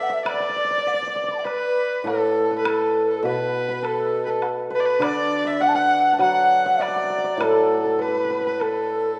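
Chinese traditional chamber music, pastoral and graceful at 100 BPM in a straight 4/4 and D gong mode, where a mellow, distant bamboo xiao carries the melody with vibrato and a soft attack, a rich, earthy bowed erhu with light vibrato and portamento and a warm, shimmering hammered dulcimer play second lines, a woodblock sits in the background from 0.3 s, and a bright, ringing low dulcimer accompaniment joins at 2.0 s, the ensemble heard in a reverberant recital hall in this short cut from a longer piece.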